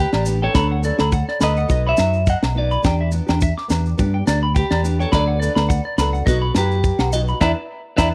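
Sunny and warm, this short highlife guitar band excerpt at 105 BPM in D major swings lightly as a clean electric guitar sings a picked melody through spring reverb over a brighter, twangy electric guitar's arpeggios with tape echo, a dark, round fingered bass, a tight, up-front funk kit with high-tuned snare, ringing agogo bells, grainy maracas and a small fingerpicked nylon-string guitar, cycling through G, D6, B and Em7 in a dry, close 1970s-style studio sound before a band accent at 7.4 seconds.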